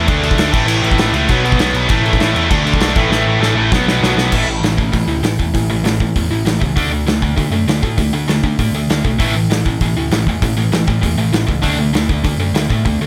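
A bright, double-tracked distorted guitar riff sits up front in this rowdy, upbeat punk rock excerpt, churning through D5, A5 and B5 power chords, while a second overdriven guitar plays a riff of its own from the background until 4.3 seconds. A growly, punchy overdriven bass drives underneath, and a loose acoustic kit with a tight kick, a medium-tuned snare, hi-hat and crash plays up front in a small, pumping room, with a drum fill from 3.1 seconds leading into the next section. Light reverb wraps the whole band.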